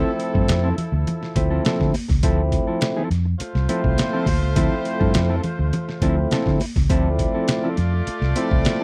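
A straight 4/4 funk groove at 103 BPM drives this short cut from a longer piece in D minor, resting on a single Dm9 chord for its roughly 8.8 seconds. The trip hop sampler-style drum kit enters at 0.2 seconds, compressed, pitched down and gritty, with a thumpy kick, a medium-tuned snare and hi-hat sitting up front, while a dark, round, foam-muted fingered electric bass joins at 0.3 seconds to anchor the low end. High-tuned congas, struck with hard hands and ringing, arrive at 0.5 seconds in the background. A fat, lightly overdriven tonewheel organ, using third harmonic percussion and a stopped rotary speaker, punches out stabs up front, as a clean, mellow electric guitar plays fingered accompaniment. A warm horn section with light vibrato and a smooth top carries a pop-style second line. The sound is dry and close, like a 1970s studio session, giving the whole a driving, funky feel.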